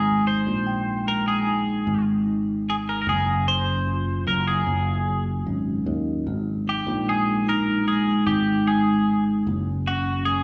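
A twelve-string electric guitar carries a bright, twangy, picked melody up front over a bell-like tine electric piano with phaser and a growly fretless bass from the first second of this heartfelt, emotional pop excerpt, moving from Abmaj7 to Gb5 and Ab5 chords and bathed in the lingering reverb of a concert hall.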